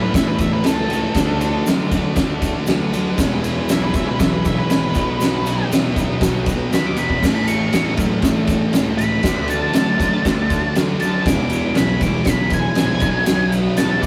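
A rough, saturated rehearsal-room recording with a moderate small-room reverb carries this rowdy, raw garage rock excerpt at 119 BPM in E major, cycling through A, D, E and B. Up front, a double-tracked thick fuzz guitar plays the riff, and an oversized low-tuned drum kit thunders with a boomy kick, fat snare, dark cymbals and a pumping stone-room sound, while a growly overdriven picked bass sits in the background. A dark octave-fuzz lead guitar solos throughout over a very quiet, buzzy combo organ holding sustained chords with heavy vibrato, and a grainy tube shaker sits in the background.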